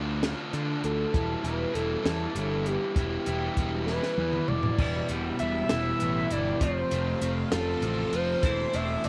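A slow 6/8 pulse at 66 BPM, felt in dotted quarters, carries this cool, bittersweet indie rock piece, cut from a longer work. A raw, overdriven garage guitar riff and a fuzzy picked electric bass open together over Dm and Em, with a compact cocktail drum kit joining at 0.2 seconds: a dark, smooth acoustic set with a high-tuned snare, tight kick, hi-hat, toms and crash cymbal in a small room. At 0.8 seconds a gritty, screaming synth lead enters with the melody, its sawtooth and pulse-wave tone shaped by ring modulation, a moving notch, vibrato, distortion and slapback echo. A drum fill leads into the second section at 4.8 seconds, where a twangy, compressed clean electric guitar adds a second riff with analog chorus and slapback echo. At the same moment, a shimmering vintage string machine of violins sits in the background with slow-attack sustained chords and ensemble chorus, as the harmony moves to F and then Am/E. 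Light reverb and a small room ambience hold the parts close.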